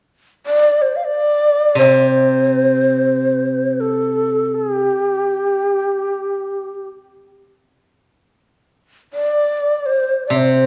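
A breathy, end-blown bamboo shakuhachi carries the graceful, pastoral melody in free time from 0.5 seconds, its tongued chiff and unsteady vibrato sitting up front, while a silvery steel-string zither played with fingerpicks rings out a low accompaniment from 1.8 seconds in this Chinese traditional chamber piece, all bathed in the lush reverb of a recital hall and cut from a longer work.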